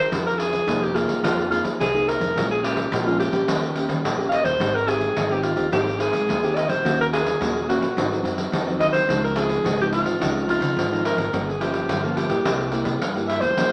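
A mellow alto saxophone and a dark, fingerpicked nylon-string guitar open this bittersweet yet lively samba and choro excerpt, joined at 0.1 seconds by a woody pizzicato upright bass and a jingly pandeiro played with soft hands. The saxophone carries the solo melody up front in a jazz style, with subtone and light vibrato, while the classical-sounding guitar accompanies through a chord progression of minor sevenths, dominant sevenths and major sevenths that closes on Gm7b5 and C7. Moderate studio reverb gives the saxophone and pandeiro a roomy, distant quality, and the whole recording has a small-speaker sound.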